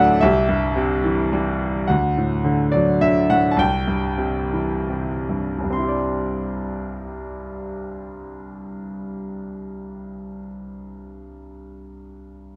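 A bright grand piano opens this brief cut from a longer classical piece, playing alone in 3/4 with a lyrical, rubato feel. The mood is sunny and hopeful, set in C lydian with the instrument tuned to A4 = 437 Hz, and the tempo drifts between 66 and 114 BPM. The harmony moves from C to D at 1.9 seconds, where the pace slows down, then returns to C and arrives on Cadd9 at 5.7 seconds. Spanning C2 to C6, the piano has a brilliant, smooth tone with a vintage character and long sustain. It sits up front in a light reverb.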